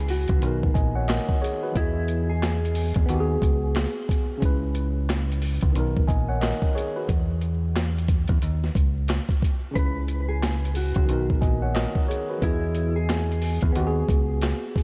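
A worn, slightly out-of-tune tine electric piano, heard through a combo amp and colored by cassette tape, opens this reflective, dark boom-bap hip-hop fragment alongside a round, up-front fingered dub bass and a mellow, compressed electric guitar melody that drifts through analog chorus and delay. A gritty, pitched-down sampler-style kit with a thumpy kick, high-tuned snare, hi-hat and handclaps swings through jazzy seventh chords. The guitar falls away at 4.4 seconds and returns at 9.8 seconds, all over a bed of vinyl crackle and light reverb.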